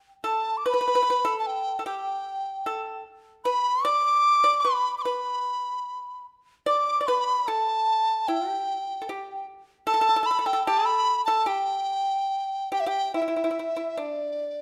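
Festive yet graceful, this short excerpt of Chinese traditional chamber music unfolds in a free, rubato feel around 74 BPM in 2/4, set in the G gong mode. A large dizi carries the melody up front, its bamboo tone pure and hollow with a buzzing membrane, tongued notes and vibrato coloring the line between D5 and D6. Beneath it, the pipa supplies a second line from D4 to D5, played with fingerpicks for a dry, percussive attack that sits well back in the balance. The dizi enters at 0.3 seconds, just after the pipa, and both carry on together to the close at 14.6 seconds, with a brief new section arriving at 13.1 seconds. A moderate recital hall reverb lends the pair a natural sense of space.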